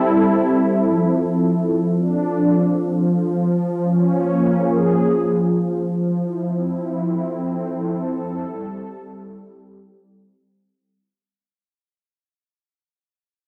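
A home cassette recording bathed in a wet spring reverb and digital ambience gives this short ambient fragment, cut from a longer piece, a hazy, reflective and melancholic air in a gentle 3/4. A lone analog pad, up front and smooth with a soft attack, sustains detuned sawtooth tones coloured by chorus and tape, drifting through Am7, Dm7, Bbm7 and Fmaj7 before settling back on Am7. From 4.3 seconds the sound slowly fades out until it ends at 11.0 seconds.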